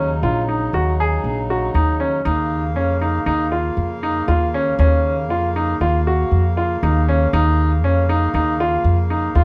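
Clear, up-front baby grand piano arpeggios sound over woody pizzicato upright bass on steel strings and the reedy, breathing sustained chords of a hand-pumped harmonium in this hypnotic, pensive contemporary chamber excerpt, which moves at 118 BPM in a straight 5/4 from Ebm7 to Bbm/Eb at 2.3 seconds, with a dark production and light reverb.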